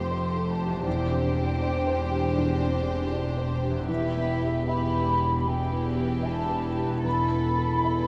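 Rubato in feel, this cinematic excerpt moves in 4/4 at around 73 to 82 BPM, with a sorrowful, bittersweet mood. A dark violin section carries the melody, bowed sul tasto with light vibrato and a soft attack that sounds close and intimate. A second violin section with a rich tone and a mellow, hollow flute section play second lines, the flute distant and tongued with its own vibrato. In the background, a felt-muted upright piano plays soft accompaniment with its action noise audible, joined by a pure, floating viola section, while a cello section and an up-front double bass section hold the bass in soft sul tasto bowing, and a very quiet concert harp rings out fingerpicked arpeggios. The harmony moves from Fadd9 through Cadd9/E and Em to an Esus4 at 7.1 seconds, all within a moderate scoring-stage reverb.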